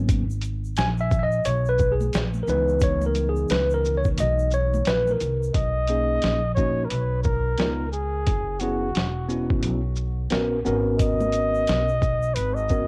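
Cassette-taped home recording with light small-room reverb frames this cool, smoky jazz-hop excerpt at 88 BPM in C# dorian, where a clean tine electric piano, woody pizzicato upright bass and a gritty, pitched-down boom bap kit with a thumpy kick swing together over faint, distant egg shaker and congas, until a breathy, whispered flugelhorn with vibrato and tape echo takes up the melody at 5.6 seconds.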